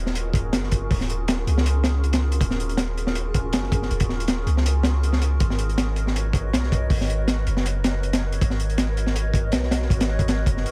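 Raw and nostalgic, this short drum and bass and jungle cut moves at 160 BPM in Eb minor, with a light swing on the sixteenths. A long, deep 808-style bass with a sine tone and fast attack sits up front from the start, ringing out mellow and decaying between Eb1 and Db2. From 0.1 seconds, a crunchy, saturated breakbeat kit joins, its gritty, dark sound built on a high-tuned snare, tight kick and hi-hat, all heard in a small studio room.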